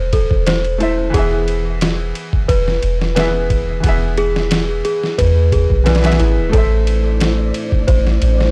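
A dry, gritty hardware sound with transformer saturation frames this brooding, smoky trip hop fragment, cut from a longer piece. A clear, woody upright piano plays accompaniment with short sustain, colored by harmonic tremolo and tape echo, while a worn, bell-like celesta traces delicate, slightly out-of-tune arpeggios through 12-bit sampler grit, a low-pass filter and its own tape echo. Underneath, a soft, round 808-style bass sits up front with a deep, decaying sine tone. From 0.1 seconds a compressed, pitched-down sampler-style drum kit joins, its thumpy kick, medium-tuned snare and ride cymbal carrying a tape-warm character. At 6.5 seconds a moody analog pad enters with nasal, detuned sustained chords treated with chorus, and at 6.9 seconds a flickering granular texture drifts in the background with mellow built-in reverb.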